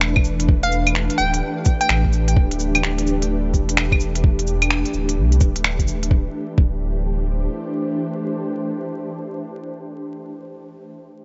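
Swung sixteenths at 128 BPM in 4/4 drive this rainy, melancholic future garage fragment, where a soft, tape-warm kick and a crisp small-room kit of cabasa, claves, finger snaps and hi-hat sit up front under a round sine sub bass and an ethereal, detuned, wave-folded pad with ensemble chorus, 12-bit sampler grit and sidechain pumping, moving from Gadd9 to a rootless Cmaj7/D and then a bare D5 once the kit drops out at 6.1 s, while a hollow, bouncy square-wave pluck with chorus and tape echo flickers briefly between 0.6 and 2.1 s, all wrapped in light reverb, vinyl crackle and a muted, rolled-off top end.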